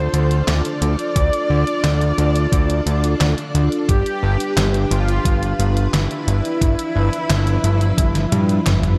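An up-front, thick sawtooth analog bass with sidechain pumping anchors this nostalgic, nocturnal synthwave excerpt at 88 BPM in straight 4/4, moving from Dm to G at 3.9 s beneath a smooth, detuned soft supersaw melody trailed by analog delay and shimmer reverb, lush vintage string-machine chords pumping under ensemble chorus and shimmer reverb, a detuned 8-bit digital drum machine of handclaps, hi-hat, snare and toms that closes on a drum fill from 8.3 s, and a thumpy, tape-warm electronic kick that enters at 1.2 s, all set in a dreamy mix soaked in plate reverb.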